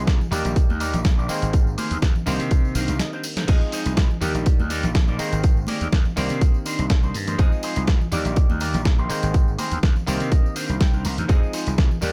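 A stringy, percussive clav and an overdriven, gritty slap bass open this funky, sensual stretch of filtered disco house, both pumping against the sidechain and set in F dorian at 123 BPM with a light 16th-note swing. The clav runs through a combo amp with phaser and a vintage 12-bit sampler grit, while the electric slap bass, bright and direct, drives the low end. Almost at once a punchy, tape-toned electronic kick sits up front, layered with a compressed, sampler-style soul kit of crash, hi-hat and a medium-tuned snare, as tambourine and congas pump in the background. A twangy, picked electric guitar through an envelope filter and phaser carries the riff over a looping Ebmaj7, Abmaj9, Cm9 and Fm7 progression. A clean electric guitar fill appears near 2.5 seconds, leading into a short break and drum fill at 3.0 seconds, and another guitar fill returns at 9.8 seconds. The mix is dry and close, with little reverb.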